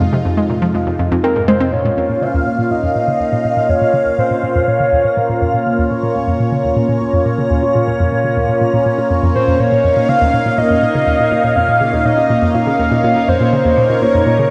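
A straight 4/4 pulse at 122 BPM drives this cosmic, mysterious stretch of sequencer-driven space music in Bb minor, cut from a longer piece, as a hollow, bouncy square-wave pluck riff with chorus and delay runs alongside a swirling, phased and chorused analog pad holding sustained chords that move from Fm7 to Bbm. An up-front, round, octave-layered synth lead with vibrato sings a mellow melody from 1.2 seconds, pauses, and returns at 9.3 seconds, while a faint twinkling granular texture with an octave-up shimmer drifts into the background from 4.0 seconds. The dreamy mix is soaked in a lush hall reverb with a cassette-tape character.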